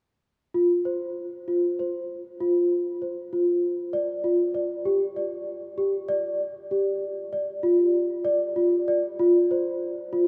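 In a straight 7/8 at 195 BPM counted in eighths, this pensive yet urgent contemporary instrumental passage in D minor, cut from a longer piece, features a solo large celesta, bell-like, delicate and sweet, set up front with medium felt hammers and ringing between F4 and D5 from 0.5 to 10.3 seconds, shifting into a new section at 9.2 seconds, all bathed in the vast echo of a cathedral reverb.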